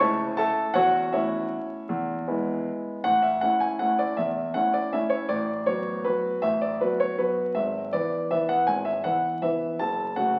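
Playful and sparkling, this short cut from a longer classical piano waltz in A major moves at 159 BPM in 3/4 with a rubato feel, its clear, smooth, vintage grand piano played solo and up front, ranging from F#1 to E6, set in a wet recital hall reverb on a very old 78 rpm record with vinyl crackle, shifting into a new section at 3.0 seconds as the harmony passes through A, Bm7/A and E/G# before landing on F#m.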